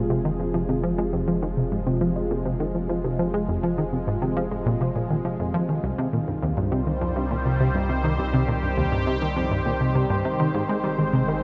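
Hypnotic and cosmic, this short ambient cut from a longer piece moves at 102 BPM in a straight 4/4, settled in F minor. A tight, driving sequenced synth riff sits up front through the full 11.4 seconds, its detuned sawtooth tone shaped by a filter pluck, mellow in character and treated with chorus and analog delay. Around it, a sweeping resonant pad holds sustained chords, airy and evolving, with a noise layer and a filter swell giving it a bright lift. Beneath both, a round analog bass built from triangle and sine tones anchors the low end with a deep, dark glow. The harmony passes from Fm to Cm at 5.8 seconds and reaches Ab at 10.5 seconds, all bathed in a huge ambient reverb with a long 7.5-second tail and a softened top end.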